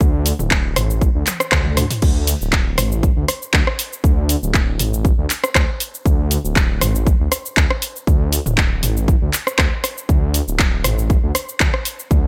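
Set in a bright 1980s-style digital ambience, this earthy, spiritual afro house excerpt at 119 BPM with a light 16th-note swing pairs a punchy, layered electronic kick with an up-front house drum kit of handclaps, hi-hat, rim click, shaker, toms and crash cymbal, with a brief drum fill from 1.3 to 2.0 seconds, all over a deep, rumbling detuned saw bass whose dark, beating tone pumps with sidechain compression.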